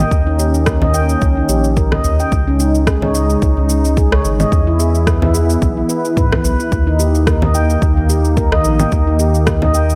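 Meditative and mystical, this organic downtempo excerpt sets an up-front, ringing stainless-steel handpan arpeggiating over a smooth detuned analog pad with chorus and sidechain pumping, a round, dark analog bass, an overdriven electronic kick, overdriven layered electronic shaker, rim click and congas, and a deep udu tucked in the background from 0.8 seconds, all in a light digital ambience with delay on the handpan.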